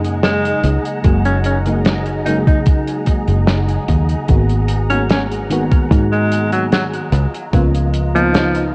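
A straight 4/4 pulse runs through this faded, woozy vaporwave fragment, cut from a longer piece. A damped 70s drum kit supplies dry hi-hat and a medium-tuned snare, roughened by 12-bit sampler grit and studio reverb. An overdriven, thumpy electronic kick sits up front from 1.0 s until 7.7 s, while a fingered electric bass with tube saturation stays punchy and foam-muted beneath it. A mellow FM electric piano carries the accompaniment with a round, dark tone, chorus, tape echo and its own sampler grit, and a silky string machine holds slow-attack chords higher up through ensemble chorus. From 0.2 s a clear alto saxophone takes the solo melody in a forceful jazz style with vibrato and tape echo, over harmony that moves from F#69 to G#m9 and on to C#13, the mix set in light small-room ambience with a cassette tape character.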